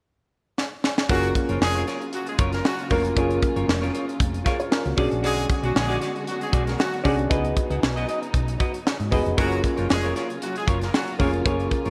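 Lightly swung sixteenths in 4/4 drive this upbeat, glossy 1980s jazz-funk pop excerpt, which opens with a tight, up-front acoustic drum kit with a high-tuned snare, playing a fill from 0.6 s. At 1.1 s the band arrives over chords such as F#maj7 and C#9sus4: a round, dark hollow-body electric bass, a natural-sounding baby grand piano with subtle chorus, a clean semi-hollow electric guitar riff bathed in lush chorus, and a clear jazz-style horn section with light vibrato and digital delay that drops out at 11.1 s. Expressive bowed studio strings hold smooth sustained chords in the background, and a hall reverb frames the bright digital production.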